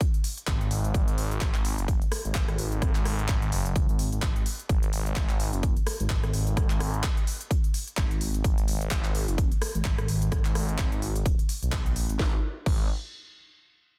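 Bass house at 128 BPM in G# minor, aggressive and bouncy, with a swung sixteenth-note feel, cut from a longer piece. A punchy, overdriven electronic kick sits up front beside a tape-warm garage kit of cracking snare with soft clipping, crisp hats, handclaps, rim clicks and crash cymbal, re-recorded in a large room, while a thick, swirling detuned saw bass enters at 0.5 seconds in the F#1 to B1 range, saturated through tube drive and phaser, with sidechain pumping and a filter sweep running until 12.2 seconds. The mix is dry, dense and heavily limited in a modern style.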